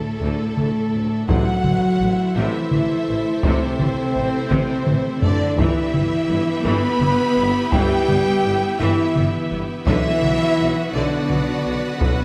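Violins carry a lush, vibrato-rich melody from the opening of this dark, heroic orchestral film-score excerpt in a slow 6/8 at 56 BPM in A dorian, joined by a second violin line and a very quiet, hollow concert flute, while a clear viola section accompanies and a biting string section and distant, dark French horns hold sustained chords over Dsus2, Am, Em/G and Bm. Expressive cellos, focused double basses and a soft tuba anchor the bass, and distant taiko drums struck with hard sticks enter at 0.6 seconds, with a drum fill between 4.5 and 5.6 seconds. Round, soft-mallet timpani touch in briefly at 1.3 seconds, and the whole orchestra sits in a wet scoring-stage reverb.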